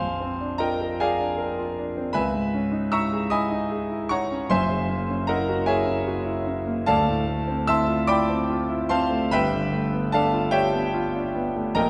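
Mysterious and hazy, this short fragment of impressionist classical solo piano drifts in a rubato 6/8 at about 50 dotted-quarter beats per minute, its clear concert grand sitting up front with deep bass and an open tone across a range from Gb1 to Fb6, wandering through lush ninth chords (Bb9, Dbm9, Gb9, Dm9, G9) inside the wet, lingering reverb of a recital hall whose sound tops out at 10.9 kHz.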